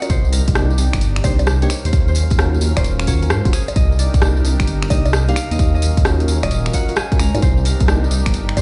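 A ringing concert harp melody with delay opens this moody, bouncy two-step garage excerpt, set over a smooth, chorused analog pad that pumps in the background, glassy bell-like FM electric piano stabs with chorus and tape echo, a tape-warm analog drum machine of bongos, finger snaps, hi-hat and rim clicks, and a jingly, close tambourine. At 0.1 seconds a deep, rumbling detuned saw bass arrives up front alongside a layered, punchy electronic kick, while the harmony sways between Cm7 and Ebm7 with a swung sixteenth-note feel. The sound is dry yet heard through a big system in a bare stone room, with a dulled top end.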